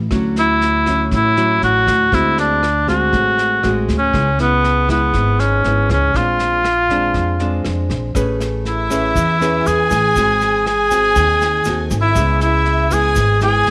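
A straight 4/4 bossa nova groove at 120 BPM sets a relaxed, sunny mood, with brushes on a vintage kit of tight kick, rim click and snare, a woody, thumpy pizzicato upright bass, and a dark, fingerpicked nylon-string guitar with audible finger squeak moving through chords such as Dmaj9, Bb9 and G#7b9; over them a smooth, up-front cor anglais with light vibrato sings the solo melody, joined at 8.2 seconds by a grainy, bright tube shaker in the background and at 8.7 seconds by a lush, close, bowed violin section on a high second line, the whole heard in a small room with light reverb.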